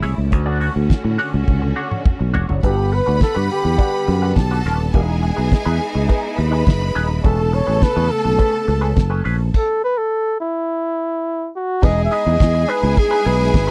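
Danceable and glamorous, this disco excerpt opens with a damped, fat-snared 70s drum kit, a growly tube-saturated fingered bass, a hollow-body guitar through wah and lush chorus, and clear bowed strings holding sustained chords, before a punchy flugelhorn takes the melody at 2.6 seconds over a second string line, with a drum fill from 1.5 seconds and a stop from 9.5 to 11.8 seconds in a dry, close 1970s-style studio sound.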